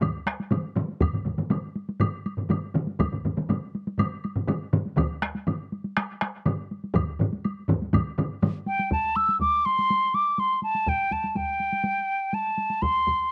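Recorded outdoors with light reverb and a dulled top end, this driving, powerful Japanese traditional taiko ensemble excerpt at 122 BPM in a straight 4/4 sets a close, dry solo taiko struck with hard sticks and touched by slapback echo over two hard-stick taiko groups in a small room (one up front), a heavy-stick taiko group and a woody woodblock in a live room, until the hard-stick groups and woodblock stop at 8.5 s and a mellow wooden piccolo enters up front at 8.7 s with a pure, expressive tone, vibrato, a soft attack and its own slapback echo, playing above the solo drum and heavy-stick taiko, which carry on to 13.2 s.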